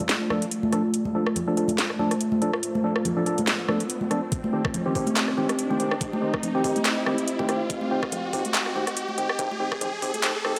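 Brooding and cavernous, this deep dubstep passage, cut from a longer piece, moves at 142 BPM in a half-time feel with a light swing on the sixteenths, building up throughout over a shift from D minor to C minor at 4.3 seconds. A deep, moody ambient pad holds sustained chords from the start, its wave-folded, ring-modulated sawtooth tone thickened with a sub octave, chorus and its own reverb. Alongside it, a hollow, organ-like percussive stab with a fast attack and decaying tail sits in lush chorus and dub echo, and a filter sweep runs over it for the whole build. Up front, a tape-warm garage kit plays cracking snare, metallic hi-hats, handclaps and rim clicks, with high-pass filtering on the snare and hats, while bright, high-tuned congas with hard hands add echoing accents. An electronic riser enters at 0.6 seconds, and a knocking electronic kick joins at 4.3 seconds and drops out at 10.1 seconds. 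The mix sits in a moderate lush hall reverb, yet carries a dry, gritty hardware character with transformer saturation.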